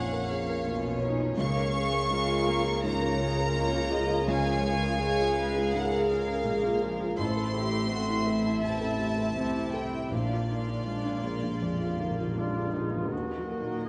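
Set in a rubato 4/4 around 82 BPM, this cinematic film-score passage is cut from a longer piece and carries a sorrowful, longing mood over chords moving from Bb minor through A minor and Bb7 toward Eb minor. A pure, floating violin section carries the melody high and sul tasto, while a second violin line sits close beneath it with light vibrato and a soft attack. Violas, shadowy and held in the background, and a felt-muted upright piano, mellow and intimate with audible action noise and a vintage character, fill out the accompaniment, and a very quiet concert harp rings in fingerpicked arpeggios. The bass is shared by soft-edged cellos and a woody, lush double bass section heard from a distance. A close, dry timpani fill with medium mallets enters from 10.1 s to 13.1 s, and at 12.4 s a duduk steps up front with folk-style vibrato to join the melody. A wet scoring-stage reverb surrounds the orchestra, and the top end is gently rolled off.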